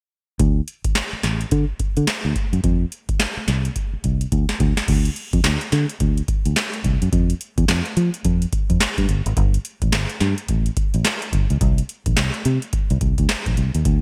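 New jack swing R&B at 107 BPM in D minor, bouncy and confident with a swung sixteenth-note feel, this excerpt pairs a round, dark fingered electric bass, foam-muted and up front, with a booming analog drum machine of deep kick, crisp snare, metallic hi-hats, handclaps and crash cymbal that sounds tape-warm and re-recorded in a large room, all under light reverb and bright 1980s-style digital production, with a drum fill from 3.8 to 4.9 seconds leading into a new section.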